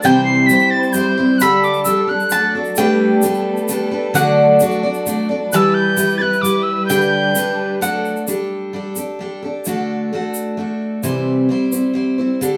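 A gentle waltz-time lilt with a straight feel carries this hopeful acoustic folk piece, cut from a longer performance for a duo or small band. A pure, mellow tin whistle with vibrato and a crisp chiff sings the melody up front, though it sounds slightly distant; it drops out briefly and returns at 5.5 seconds. Beneath it, a picked steel-string guitar with fresh, bright strings drives the accompaniment, while a woody mandolin with doubled strings plays a second line. A veiled, con sordino string section adds soft-edged, lush sustained chords, and a grainy egg shaker sits close and dry. The mandolin stops at 8.2 seconds and the strings at 8.3, leaving guitar and shaker to carry the closing passage in a small room heard from further back.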